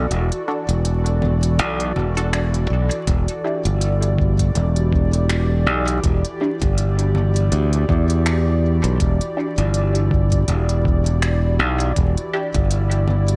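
Over a gently swung pulse of congas, finger snaps and smooth hi-hat drifting in dub echo, this meditative, deep ambient dub fragment sets a bright, growly fingered electric bass up front beneath an airy, breathy pad with chorus and a muted, phaser-tinged chord stab echoing in the background, while a muffled, thumpy sampled kick joins at 3.1 s as the harmony settles from D over E to E minor seventh amid vinyl crackle and light reverb.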